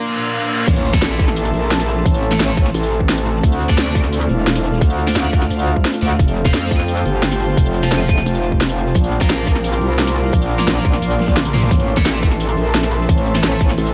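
A straight pulse of dark technical drum and bass arrives at 0.7 seconds, when a tight, up-front electronic kick and a layered kit with a cracking snare, crisp hats, crash, tambourine and toms hit together with an electronic impact. A reverse cymbal rises just before that drop, and beneath the main kit sits a very quiet, gritty breakbeat kit with a dark, rolled-off top. Two metallic wobble basses carry the low end, one saturated and one distorted, both FM-driven and chorused, with the saturated one pumping to the sidechain. Scooped, high-gain electric guitar stabs, double-tracked and bright with digital delay, cut across a deep, moody ambient pad of detuned sawtooth chords and an airy, breathy pad layered with noise, both pulsing to the sidechain. The harmony moves from Am through Dm7, F and Bb, and a drum fill at 11.2 seconds, with the kick dropping out at 11.4 seconds, sets up the return of Am in this mechanical, aggressive passage.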